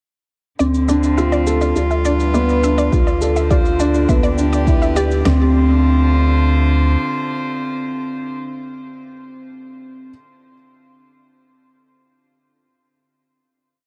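Set in light reverb, this short, intimate piano and strings electronica piece pairs a dark, woody upright piano riff, up front with digital delay, with a floating, sul tasto string quartet holding slowly shifting chords under sidechain pumping and a low-pass filter. A round sine sub bass sustains the root while a bright, detuned analog pluck sits in the background, its chorused, delayed 5-step loop drifting against the bar over a restrained, tape-warm shaker pulse. A deep house kit with deep kick, fat snare and toms joins the build at 2.9 seconds and drops out near 5.4 seconds, leaving a moving final chord, after which the piano rings on alone until 10.1 seconds.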